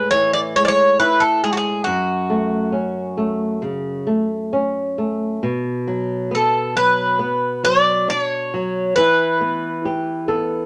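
A metallic, double-strung Greek bouzouki sings a mournful, longing melody up front over fingerpicked flamenco guitar in this slow, rubato fado-style ballad at 68 BPM, moving from F# minor to B minor at 5.4 s, with a guitar fill arriving at 9.8 s, all set in a moderate studio reverb and cut from a longer piece.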